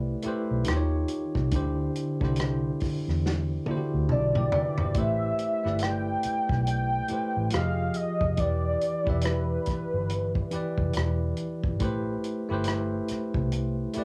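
Soulful and sultry, this slow 70 BPM neo-soul R&B piece in A minor, cut from a longer work, swings its sixteenths as a bright, bell-like tine electric piano moves through chords such as Am9, Fm7 and Em7 over a dark, round, foam-muted fingered bass with transformer saturation and a tight, rolled-off soul drum kit with rim click and toms that adds a fill, while a velvety, detuned sawtooth synth lead with chorus, vibrato, plate reverb and cassette tape colour carries the melody from 4.1 to 11.0 seconds, all set in the intimate small-room ambience of a home cassette recording.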